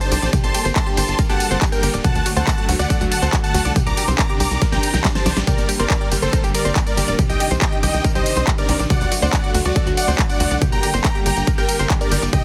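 In this euphoric 140 BPM uplifting trance passage in G harmonic minor, a huge, detuned supersaw lead with cassette-tape grit, delay and vibrato soars over a lush, phased supersaw pad and a big-room dance kit of huge snare, crisp hats, handclaps, ride, tambourine and toms, joined within 0.3 seconds by a round analog pluck playing chorused, delayed arpeggios, a tight, nasal sequencer bass and a punchy, up-front electronic kick, with the lead, pad, pluck and bass pumping to the sidechain, a drum fill from 4.6 to 5.5 seconds, and the whole mix dry and squeezed into a dense, heavily compressed radio sound.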